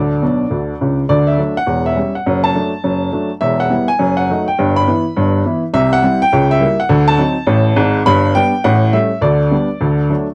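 A dry, close 1970s-style studio sound with light reverb frames this exuberant, swinging stride piano jazz at 206 BPM in 4/4, where a solo upright piano with a woody, natural tone and long sustain sits up front across a range from E1 to B5, opening with a fill from 0.2 to 1.1 seconds and moving through diminished passing chords before settling into G major at 5.7 seconds, where a D7b9 resolves to G, in this passage cut from a longer piece.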